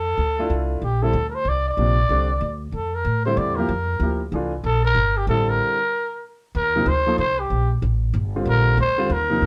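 Modal jazz excerpt in a swung 3/4 at 188 BPM, open and hypnotic, with a raspy, growling trumpet carrying the melody up front with vibrato and scooped notes over a woody, thumpy pizzicato upright bass and a polished grand piano that joins at 0.4 s, the Bbmaj9 harmony halting in a stop from 5.6 to 6.6 s before moving to Ebmaj9, in a light reverb.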